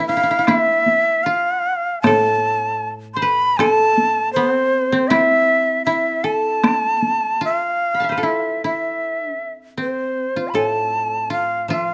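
A rubato pulse in 2/4 around 78 BPM gives this cut from a longer piece of Japanese chamber music a meditative, austere calm, set in A hirajoshi with tuning at A4 = 438 Hz. Up front, a bright, airy end-blown bamboo shakuhachi carries the melody throughout, its crisp attack, audible chiff and vibrato caught by close microphones. A koto played with fingerpicks also sits up front as a second line, dry and woody in tone. A second koto adds lower accompaniment, dropping out at 4.4 seconds and returning at 10.5 seconds. A taiko ensemble struck with hard sticks has a vintage, band-limited sound and falls silent at 7.2 seconds. Light reverb surrounds the detailed recording while keeping the instruments intimate.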